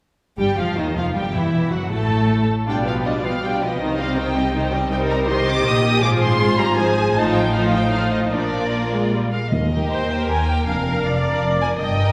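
Bathed in a wet hall reverb, this stormy, restless classical-period orchestral excerpt in triple time, played with rubato, sets a dark, expressive first violin melody with portamento over a distant, lush second violin line, an up-front, warm viola accompaniment, a woody cello bass and a rich, even double bass, with very quiet, articulate hard-mallet timpani entering at 9.5 s.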